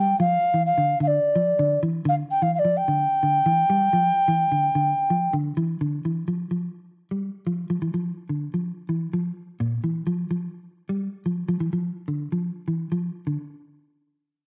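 Afrobeat in a straight 4/4 at 127 BPM, funky and defiant, cut from a longer piece. An airy, hollow alto ocarina with a clay tone carries a tongued, vibrato-laced melody up front over a G7 harmony, while a dark, clean electric guitar plays fingered arpeggios low in its register, coloured by spring reverb. The ocarina stops at 5.3 seconds, leaving the guitar alone in a moderate studio room until 13.4 seconds as the harmony drops away.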